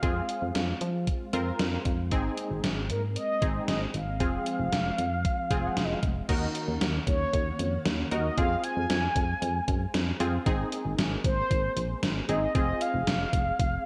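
Synth-pop with a driving, cool mood, this fragment of a longer piece rides on a gated 80s digital drum machine placed up front, its thumpy kick, gated-reverb snare, hi-hat and crash cymbal re-recorded in a large room, while a solid FM bass supplies a punchy, round, fast-attack line. A funky polysynth comp of detuned sawtooth and wave-folded tones with a filter sweep and chorus fills the middle, and a vintage, organ-like ensemble string part with soft attack and a moving notch sustains chords in the background over a progression moving among Fm, Abadd9 and Ebm7. Carrying the melody, a mellow horn-like synth lead with vibrato, chorus and delay sings through lush hall ambience and bright 1980s-style digital production.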